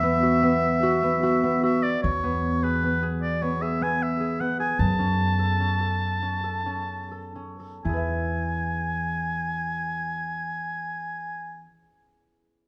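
A recital hall's moderate reverb surrounds this brief chamber excerpt, with all three acoustic players sitting up front. It is contemporary instrumental music in 7/4 with a straight feel, set in E major with the tuning at A4 = 443 Hz, and its mood is hopeful and playful. A clear classical-style oboe carries the solo melody between B4 and A5 with a light vibrato, while a thumb-plucked concert harp spins ringing arpeggios beneath it. An upright bass with steel strings anchors the low end with woody, thumpy pizzicato notes between E2 and F#2. The tempo moves between 118 and 154 BPM and slows from 4.4 to 7.8 seconds. The harmony opens on Esus2, settles onto E at 2.0 seconds, passes through F#m, and returns to E at 7.8 seconds.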